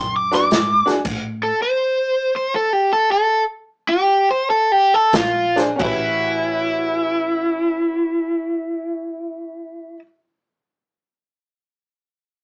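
Rollicking and swaggering, this electric blues shuffle in A mixolydian swings at 88-110 BPM. A compressed, overdriven, up-front electric guitar carries the melody throughout, over a dark, round, foam-muted vintage bass and a jangly, metallic tack piano, while a punchy natural country drum kit with a medium-tuned snare appears only in brief bursts. The tempo slows from 1.1 to 5.8 s, with the drums returning at 5.1 s, as rich chords such as E9, Bb9 and A13 pass by in a rough rehearsal-room recording with small-speaker sound and moderate small-room reverb.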